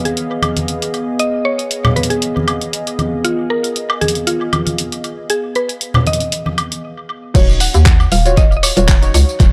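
An overdriven, up-front electronic kick anchors this hypnotic, warm deep house cut from a longer piece. It lands at the drop at 7.3 seconds alongside a hollow, bouncy FM bass and deep, nasal chord stabs with a filter sweep, all pumping against the kick over an Ebm9 chord. From the start, at 117 BPM in 4/4 with a light 16th-note swing, a woody, round mallet-like pluck carries the melody through chorus and tape echo across the whole excerpt. Until the drop it plays over a smooth, detuned analog pad holding Fm7b5, and the pad carries sidechain pumping of its own. An overdriven, layered drum kit of crash, handclaps, hi-hat, tambourine and woodblock runs throughout, re-recorded in a small room. Acoustic congas in a large room join from 0.4 seconds and drop out at 6.6 seconds, just before a short break at 6.8 seconds. The whole mix sits in an echo-heavy digital ambience.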